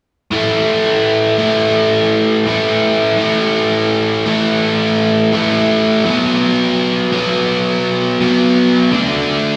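Melancholic and brooding, this short rock excerpt features a lone electric guitar, biting and overdriven, picked and double-tracked and placed up front with spring reverb. It plays from 0.3 to 9.6 seconds, moving from A5 to B5 at 6.1 seconds and then to D5. The guitar sits within a wet recital-hall reverb that gives the sound the spacious air of a church or concert hall.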